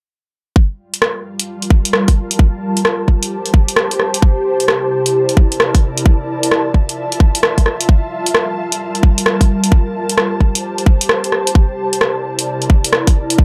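An overdriven, tight electronic kick sits up front from 0.6 s, anchoring this bouncy, moody two-step UK garage cut with its swung sixteenth-note feel. A punchy, tape-warm analog drum machine joins at 0.9 s with hi-hat and rim click that carry a small-room character. From 1.3 s an ethereal, airy pad of detuned sawtooth unison with a sub octave breathes through ensemble chorus and sidechain pumping, sustaining mellow chords that cycle through Gm9, Am7, C13 and Fmaj7.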